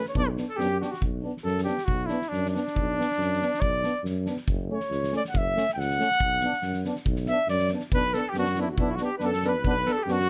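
Balkan brass band folk in a swung 2/4, fiery yet bittersweet, cut from a longer piece and led by an up-front cornet with a smooth top and light vibrato that solos from 1.0 to 7.9 seconds. A clear alto saxophone sits in the background as a second line, dropping out at 1.0 seconds and returning at 7.9, while a distant, roomy trombone and a soft-attack euphonium hold the accompaniment over a warm tuba bass. An acoustic drum kit with a punchy kick and medium-tuned snare pumps in its studio room, and light reverb rounds out the sound.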